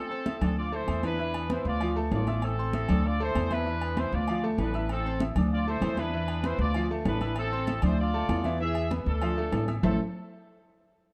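A straight four-four salsa rhythm comes from high-tuned, thin-skinned congas and ringing agogo bells and timbales set in the background. A woody, thumpy upright bass joins up front at 0.4 seconds. A punchy, vintage horn section carries the passionate, danceable melody over a brilliant concert grand piano with deep bass, while the dark production adds light reverb to this passage cut from a longer piece, which moves into a brief new section at 9.8 seconds.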